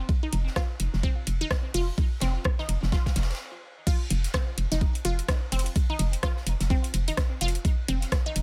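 An overdriven, knocking electronic kick sits up front in this cool, clinical minimal techno excerpt, joined by a hollow, bouncy FM bass with tube saturation and sidechain pumping, and a juicy, squelchy blip pluck moving between C4 and F4 through phaser and tape echo. A garage kit adds metallic hi-hats, crash and rim click with overdrive. Further back, a big-room acoustic kit supplies high-passed hi-hat, ride and a medium-tuned snare over a swung sixteenth feel and a small room ambience, and after a brief stop at 3.4 seconds the drop lands at 3.9 seconds.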